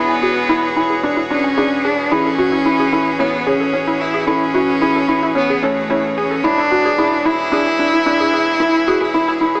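Hopeful and luminous, this short fragment of piano and strings electronica moves in a straight 4/4 over an E7, A and E7 progression. A clear, intense solo cello carries the melody up front, its vibrato and smooth top treated with shimmer reverb and digital delay. Behind it, a string quartet holds soft, airy sul tasto chords with light vibrato and its own shimmer. A felt-muted upright piano plays a mellow, intimate riff with audible action noise, also bathed in shimmer and delay. A warbling, lo-fi pluck adds detuned arpeggios in the background from 0.1 s, while a round, dark analog bass colored by tube saturation sits low beneath, and the mix is set in a wet echo chamber with a small-speaker character.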